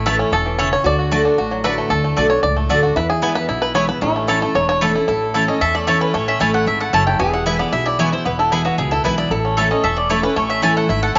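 Moderate plate reverb surrounds this lively, rustic bluegrass excerpt, and its highs are rolled off above 7.5 kHz. At a brisk 227 BPM in A major, a twangy, percussive banjo takes the lead with a solo over the first 5.1 seconds, joined by a nasal, metallic slide line on lap resonator guitar, a full-bodied dreadnought acoustic guitar in accompaniment, woody pizzicato upright bass, and up-front mandolin stabs on doubled strings. At 5.5 seconds a bright second mandolin enters with its own melody as the chords move among A, D and E.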